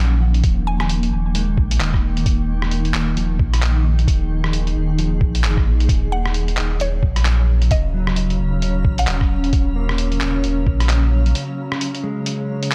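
Future garage at 132 BPM in Eb minor, this wistful, ghostly excerpt swings its 16ths over a single Ebm7 chord, with a muffled, thumpy electronic kick and a compressed lo-fi sampler-style kit of handclaps, hi-hat and rim click, both re-recorded in a large room. A deep, round sine sub bass sits up front beneath a cloudy, evolving granular pad with slow attack and built-in reverb, while a dark, clean fingered electric guitar carries 12-bit sampler grit, tape echo and sidechain pumping. A woody, mallet-like FM pluck with chorus and analog delay adds brief melody, mainly from 6.1 to 9.3 seconds, before the bass drops away for a break at 11.3 seconds, all bathed in digital ambience.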